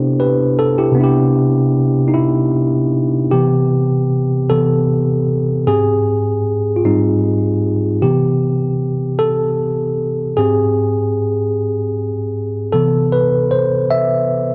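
A moderate echo-chamber reverb with a 2.2-second decay sits over the dark, warm production of this short cut from a longer R&B piece. At its centre, up front, sits a tine electric piano that sounds worn, warm and slightly out of tune, lightly overdriven as if played through its built-in speakers, and it spans from Ab2 to E5. The mood is warm and sensual, moving at a slow 51 BPM in a straight 6/8 in C major. The piano opens on a Cmaj9 before alternating between Cmaj7 and Abmaj7. From 3.3 seconds the instrument takes a solo that carries through to the end at 14.5 seconds.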